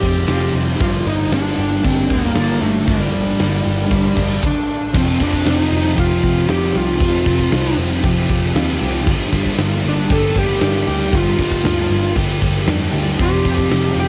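A straight 4/4 pulse at 116 BPM drives this brooding, melancholic shoegaze and dream pop excerpt, with a huge arena drum kit up front (punchy kick, medium-tuned snare, bright cymbals in a pumping hall) and a dark, round, foam-muted vintage electric bass, all pausing for a brief stop at 4.4 seconds. A thick fuzz guitar with ensemble chorus grinds out the riff over Fsus2 and Gm7, while a fuzz lead guitar carries the melody through cassette tape and tape echo. A very quiet, bright, direct-recorded clean guitar plays twangy arpeggios throughout, and a slightly broken-up guitar with reverse reverb sits in the background, playing its riff until 4.4 seconds and returning at 13.2 seconds, all wrapped in studio reverb and the sound of a home cassette recording.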